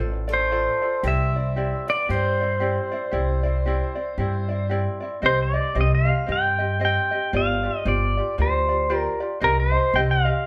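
A clean, compressed pedal steel guitar carries the melody up front from 0.3 s, played with fingerpicks, sliding and swelling its volume in this languid, sunny Hawaiian excerpt at 114 BPM in 4/4 with a swung eighth-note feel. Beneath it, a dark, woody upright bass on gut strings gives a thumpy pizzicato bottom, also sitting up front. A light, fingerpicked ukulele provides warm accompaniment throughout, while a bright, boxy picked acoustic guitar with fresh strings plays a swing-style second line in the background until 4.7 s. The harmony begins in C major, moving from Dm7 to Cadd9, then shifts to C minor at 5.2 s, passing through G7sus4 before settling back on Cm. The band plays live together in one room, bathed in a wet, large studio reverb, and the clip is cut from a longer piece.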